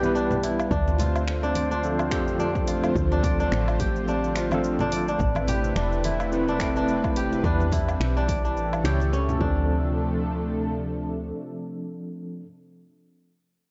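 A dark, rounded mix sits in a moderate echo-chamber reverb, giving this short cut from a longer piece of organic downtempo a warm, mystical glow. A ringing, crisp kora sits up front with bright fingerpicked arpeggios carrying a delay, while a barky, gritty tine electric piano plays accompaniment through a combo amp, its medium tremolo and delay colouring the chords. Beneath them a smooth, detuned sawtooth pad holds slow-attack sustained chords with chorus and a moving notch, and a woody, round FM bass supplies soft, decaying low notes; bass, pad and electric piano all breathe with sidechain pumping. The rhythm rides a swung sixteenth-note feel, with an overdriven deep house kit of cabasa, finger snaps, hi-hat and woodblock, very quiet hard-hand congas and bongos, and a punchy, overdriven electronic kick that enters at 0.7 seconds. The drums and percussion drop out near 9.5 seconds, leaving the kora, bass, pad and electric piano to carry the closing passage as the harmony returns to Dm7.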